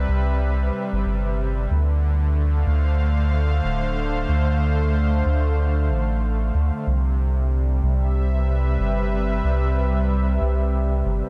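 Spacious and meditative, this ambient dub excerpt moves at 93 BPM in 4/4 with a gentle 16th-note swing: a warm, bright analog pad of detuned sawtooth tones, shimmering with chorus and tremolo, holds soft-attack chords drifting from Cmaj7 to Dm7 and back, while a deep, round sub bass with a fast attack sustains low beneath it, both up front in a light reverb.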